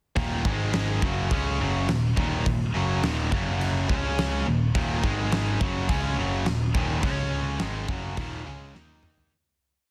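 A dense, heavily limited modern master with small room ambience carries this menacing, heavy hard rock piece: a crunchy overdriven guitar and a tight distorted guitar, both bright and up front, play a power-chord riff over growly, driving eighth-note picked electric bass that doubles it, while a big rock drum kit with a fat snare, punchy kick and rolled-off top holds a big groove until a drum fill at 8.7 seconds as the track fades out from 7.0 seconds.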